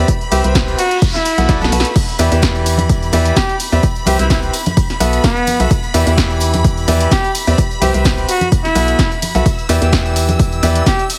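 A brilliant grand piano riff with audible action noise, delay and sidechain pumping drives this bittersweet, energetic piano house excerpt in E minor at 128 BPM with a light 16th-note swing. A distant, roomy, classical-style trumpet carries the melody above a hollow, organ-like FM bass and a punchy, tape-toned kick up front. An analog drum machine adds snare, hi-hat, crash and tambourine, with a fill at 1.5 seconds, while shimmering vintage string-machine violins hold sustained chords. A very quiet noise sweep arrives at 0.7 seconds, and bright tambourine and congas enter in the background at 2.0 seconds, over a Cmaj7, B7sus4, Em7 progression and a heavily compressed, radio-like sound.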